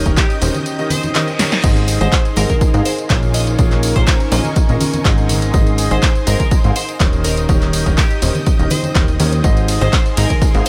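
A straight 4/4 groove at 123 BPM drives this uplifting, joyful piano house excerpt in Ab major, where a punchy, up-front electronic kick, a punchy analog drum machine of snare, handclaps, hi-hat, ride, crash and tambourine, and distant, very quiet tambourine and congas support a plucky, funky analog bass, a bright, brilliant grand piano riff with delay, a silky analog string pad, a warbling, nostalgic tape-like pad with phaser, and a crystalline wavetable pluck melody with chorus and delay, all pumping to the sidechain except the drums and pluck, while a very quiet reverse cymbal at 1.0 seconds leads into a drum fill at 1.4 seconds as the chords move from Eb7 to Ab.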